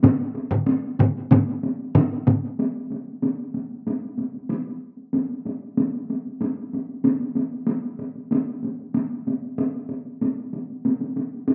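Recorded outdoors with a light reverb, this powerful, ceremonial passage of traditional Japanese taiko drumming moves at 94 BPM in a straight 4/4. Three taiko parts open together: one struck with heavy sticks, distant yet up front with a large-room air and a slapback echo; one with hard sticks, up front in a small room; and a third with heavy sticks in a small room. The last two stop at 2.4 seconds, and from 2.6 seconds the echoing heavy-stick drum carries the new section alone until the cut at 11.5 seconds.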